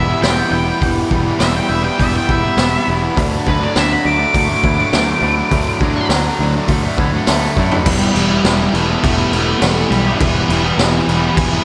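A straight 4/4 pulse at 102 BPM drives this dark, cathartic stretch of quiet-loud alternative rock in E minor, built on Em and Dadd9 chords. A shadowy octave-fuzz lead guitar carries the melody, soloing until 7.9 s, when the background twangy guitar's bright, compressed arpeggios drop away. Meanwhile a double-tracked fuzz guitar pounds out an up-front riff over a growly, foam-muted picked bass. The raw garage drum kit enters at 0.2 s with a boomy kick and gritty, rolled-off cymbals, throwing a fill at 7.6 s, and a lush hall reverb gives the whole mix a big arena sound.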